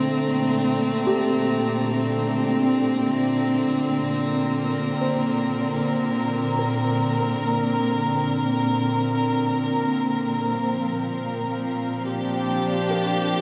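In a straight 4/4 at 76 BPM, this serene, spacious ambient excerpt places an up-front studio string section, bowed sul tasto with light vibrato, holding dark Bbmaj9 chords, joined from 1.1 s by very quiet, boxy arpeggios on a felt-muted upright piano, while a glassy, chorused glass-harmonics texture drifts in the background and fades away until a filter sweep on the strings carries the move to Bbadd9 at 10.5 s, the whole recording bathed in a vast, echoing cathedral reverb.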